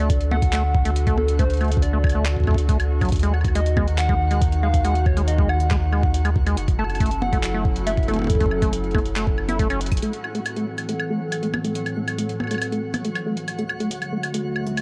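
A round, keys-like FM lead with chorus, tremolo and dub echo opens this cerebral, melancholic IDM excerpt over a hollow, flute-like pad, a rubbery sawtooth acid bass arpeggio through digital delay, a deep sine sub bass with tube saturation and a twinkling granular shimmer sitting in the background. A thumpy electronic kick and a gritty, pitched-up jungle kit of handclaps, hi-hat, toms and woodblock carry the groove until a drum fill at 9.8 seconds. At 10.0 seconds the lead, sub and kick have dropped away, and a filter sweep runs across the acid bass while the pad, texture and jungle kit continue, all under a worn, warbling cassette-tape haze and light reverb.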